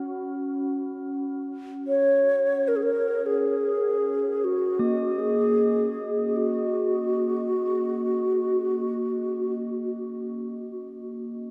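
A dreamy, reverb-soaked sound opens this peaceful, calm excerpt of free-time world meditation music, with a huge ambient wash hanging over the whole mix. A bronze singing bowl, struck with a wooden striker, rings throughout with a bright, metallic tone and slow beating, sitting up front as a textural bed. From 1.9 s to 9.6 s, an end-blown bamboo xiao carries the melody, its hollow, airy voice close-miked and mellow, with soft attacks, vibrato and tape echo.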